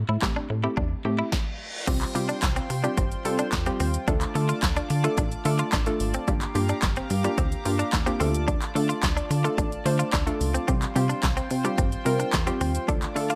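This energetic, confident dance-pop excerpt at 109 BPM opens with a hollow, bouncy square-wave pluck and a dark, funky analog bass, both pumping to the sidechain, as a twangy, direct-recorded clean electric guitar plays a chorused riff and a punchy analog drum machine sits up front with kick, snare, hi-hat, shaker, handclaps and crash. A reverse cymbal sounds over a brief stop from 1.3 to 1.9 seconds before the drop, where a shimmering, retro pulse-width pad enters with slow-attack sustained chords. The harmony moves from Am7 through Csus4, Dm and Gm7 under light reverb, and a barely audible group handclap from a live room sits far back in the mix.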